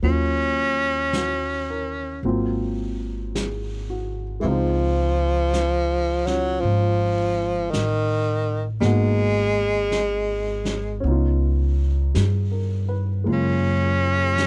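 The recording is dry, with little reverb, and this short stretch is cut from a longer, intimate and wistful jazz ballad in a slow swing. An edgy, forceful tenor saxophone carries the melody up front with vibrato and a punchy, present tone, playing throughout. Beneath it, a baby grand piano accompanies with a natural, short-sustained sound where the action noise is audible. A woody pizzicato upright bass with steel strings sits up front, while a distant, roomy brush kit adds brushed snare, hi-hat and a fat snare with a rolled-off top. The harmony moves from Ebm7 through Ab13, Dbmaj9, Abm9 and Db9, and at 13.3 seconds a smooth, bowed cello section enters in the background on sustained Gbmaj9 chords with even vibrato.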